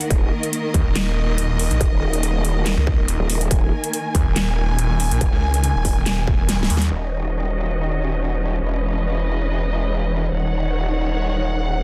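A dense, heavily limited and nearly dry mix opens straight into the drop of a menacing, heavy wobble dubstep piece in Eb phrygian at 141 BPM, cut from a longer track and felt in half-time with a light swing. A distorted, up-front electronic kick; a dubstep kit with a huge low-passed snare, metallic hats, handclaps and crash; a growling, wobbling, detuned growl bass with chorus and overdrive; and a snarling, resonant sawtooth bass with a moving notch drive the opening section up to a drum fill at 6.5 seconds. Lush bowed symphonic strings with vibrato and portamento pump under sidechain throughout, and from 6.9 seconds a filter sweep moves across them as the harmony shifts between Ebm7 and Dbm7/Fb.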